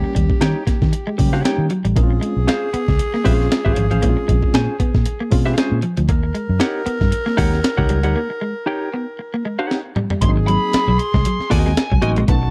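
Funk at 116 BPM with a 16th-note swing, funky and energetic, in a dry, close 1970s-style studio sound. A gritty, sampler-style breakbeat kit with a thumpy kick and high-tuned snare sits up front beside a round, foam-muted bass, while a clean picked guitar with lush chorus plays a riff, a hollow-body guitar with spring reverb accompanies, a raspy, growling tenor saxophone carries a second line, and an overdriven reed electric piano with medium tremolo adds stabs over Eb7#9 and Bbm9. After a break from 6.1 s and a drum fill, the piano returns at 10.2 s as the harmony moves to Ab9 and a dark, distorted bluesy lead guitar takes the melody high up in this excerpt cut from a longer piece.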